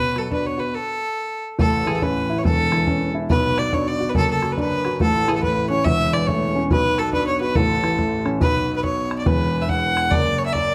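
Celtic folk polka, bright and lively in a swung 2/4, with an earthy, bowed fiddle from a single player carrying the melody up front over an intimate upright piano whose woody action noise and slightly detuned strings add character, while a boomy, close bodhran joins at 0.2 seconds, the whole band playing live in a large studio with moderate reverb and a brief stop from 0.7 to 1.6 seconds in this excerpt cut from a longer piece.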